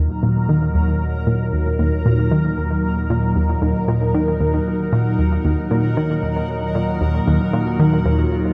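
A tight, driving sequenced synth riff sits up front, its detuned sawtooth and square tones given a plucky filter edge, chorus and tape echo, as a swirling phased analog pad holds sustained Eb minor chords alongside it. This is ambient, sequencer-driven space music at 115 BPM in a straight 4/4, with an expansive, cosmic mood, cut from a longer piece. From 0.4 seconds a faint, bubbling stepped-filter texture with resonant, bright random filter steps fades in high above, and the whole is bathed in a wet plate reverb.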